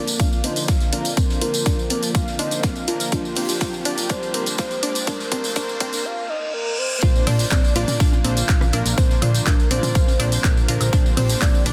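A punchy, overdriven electronic kick sits up front in this hopeful, uplifting progressive house excerpt. It plays alongside a layered big-room dance kit of handclaps, hi-hat, rim click and tambourine, with a very quiet acoustic rock kit of hi-hat, ride and snare tucked underneath. Over a Bbadd9 chord, a round, dark octave-layered synth lead carries the melody with chorus, tremolo, vibrato, tape character and delay, while a mellow analog pad holds sustained chords in the background and a smooth, evolving supersaw plays filtered stabs. A lush, detuned unison pluck adds arpeggios, and both it and the supersaw move through filter sweeps during the build-up, which also brings a drum fill, a background riser and a reverse cymbal before the drop at 7.0 seconds, where a fat, saturated analog bass enters and dry electronic toms, woodblock and congas join from 7.3 seconds. Sidechain pumping gives the lead, pad, supersaw, pluck, bass and percussion a pulsing motion, all set in a dense, heavily limited modern master with light digital reverb.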